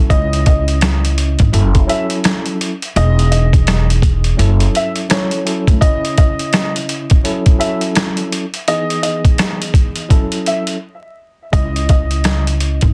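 Boom-bap hip-hop, moody and tough and cut from a longer piece, where a gritty, pitched-down sampler kit with a thumpy kick sits up front beneath a mellow tine electric piano's clean chords and a dark, worn upright piano melody carrying tape echo and audible action noise, while a woody pizzicato upright bass plays until 5.8 seconds and returns at 11.5 after a brief break, the whole mix dense, heavily limited and dusted with vinyl crackle.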